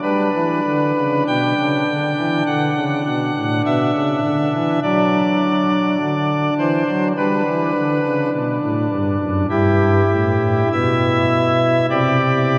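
The rhythm moves in a slow, flexible 4/4 at about 51 BPM, with rubato that lets each chord breathe in this majestic, reverent chorale-style classical fragment, cut from a longer piece and tuned to A4 = 444 Hz. A solo pipe organ plays throughout, from 0.0 to 12.6 s, voiced on a nasal cornet stop with a romantic registration and a tremulant, set up front in the mix and spanning F#2 to G5. The harmony settles on G, passes through D/F# and back to G, then moves to Em/G before opening onto a Csus2 at 11.9 s. A cathedral reverb with a long, wet decay surrounds the organ, giving each chord a vast, lingering space.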